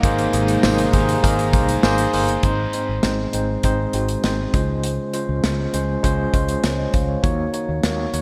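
This romantic, nostalgic piece of 1980s-style pop, cut from a longer recording, opens with the whole band at once in a straight four-beat feel. Up front, a tine electric piano with medium tremolo plays through a combo amp. Beneath it, a shimmering, detuned pulse-width pad holds very quiet sustained chords, and a double-tracked fuzz guitar sits in the background. The pad stops at 2.4 seconds and the guitar at 2.9 seconds, leaving the piano, a round, dark fretless electric bass and a modern studio drum kit to carry on until 8.2 seconds. The kit has a punchy kick, a medium-tuned snare, hi-hat and tambourine, with a smooth, small-room character and a rolled-off top. The harmony moves from Abadd9 through Ab and Dbmaj7 to Ebm7, all set in a moderate, lush hall reverb with bright digital 1980s-style production.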